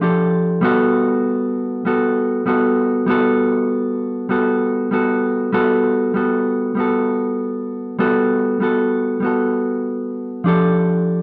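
A mellow electric guitar plays alone through this short indie pop excerpt, its clean, dark, fingered tone sitting up front in the mix. A warbly pitch drift colors the guitar, giving the hazy, nostalgic mood a slightly unsteady, memory-like quality. Set at 98 BPM in a straight 4/4 in G major, the part moves between F69 and Gmaj9 chords, staying within a range from F3 to A4 before returning to F69 at 10.4 seconds. The passage falls into two short sections, the second beginning at 5.5 seconds. A wet studio reverb surrounds the guitar, and the performance has the feel of a band playing live in one room, cut from a longer piece.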